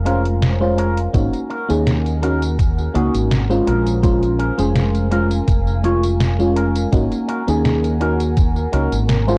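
A dry, gritty cassette-tape recording frames this woozy, nostalgic vaporwave excerpt, where a soft, round FM electric piano with phaser and tape echo and a dark, punchy fretless bass with lush chorus sit up front over a warbling, detuned tape-like pad in the background, while an envelope-filtered electric guitar plays a twangy, scooped riff coloured by vintage 12-bit sampler texture, a detuned 8-bit drum machine supplies hi-hat, snare and tambourine, and a thumpy electronic kick joins at 1.1 seconds.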